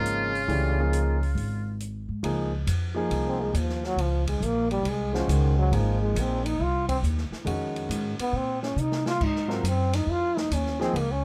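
A swung 4/4 at 138 BPM drives this hypnotic, spiritual modal jazz fragment in Db major: a buzzy, metal-muted trumpet states the melody only until 1.8 seconds, and the warm trombone with vibrato then takes a solo from 2.2 seconds, backed by a polished grand piano with audible action noise, a woody, growly pizzicato upright bass up front, and a natural small-room drum kit with dark cymbals and a boomy kick that plays a fill at 8.8 seconds, the whole recorded close and dry.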